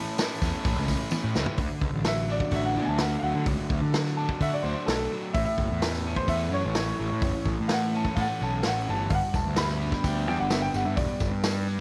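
Upbeat yet wistful, this indie rock excerpt moves at 128 BPM in a straight 4/4, opening on an Aadd9 chord before a drum fill at 1.1 seconds leads into a clear, woody, slightly detuned upright piano solo with slapback echo that runs from 1.6 seconds to the end over D, A and G. Underneath, an overdriven semi-hollow guitar and a bright, twangy, very quiet guitar through a small old amp play riffs, while a fuzzy, up-front picked electric bass and a punchy vintage drum kit with a medium-tuned snare drive the groove. A jingly tambourine sits in the background, heard briefly at the start and again from 9.3 seconds, all within a light studio reverb.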